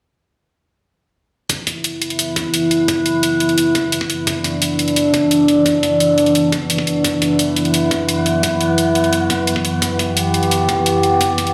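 Dark technical drum and bass, this short cut from a longer piece is aggressive and eerie throughout. Electronic drums arrive at 1.5 s: a layered, knocking kick with a tape-tinged, small-room character, and bright, overdriven hi-hats sitting above it. From 1.8 s, a metallic, inharmonic FM drone holds sustained chords. Its slow attack and long release give it a mellow yet unsettling presence up front in the mix. The drone carries chorus, its own built-in reverb and sidechain pumping. Over it all hangs a wet digital room reverb, as though the music were played on a big sound system in a bare room, lending a cavernous sheen.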